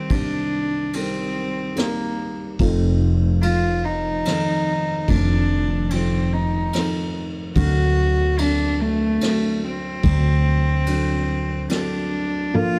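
A reedy, gut-string bowed cello carries the melody up front in this reflective, heartbroken acoustic folk-pop ballad at 72 BPM in 3/4, over a soft, mellow felt-muted upright piano, a distant, roomy brush kit with tight kick, ride cymbal and rim click, and a growly, round fretless electric bass with lush chorus that enters at 2.6 s, all moving through Cm7, F7 and D7 under light reverb in a short passage cut from a longer piece.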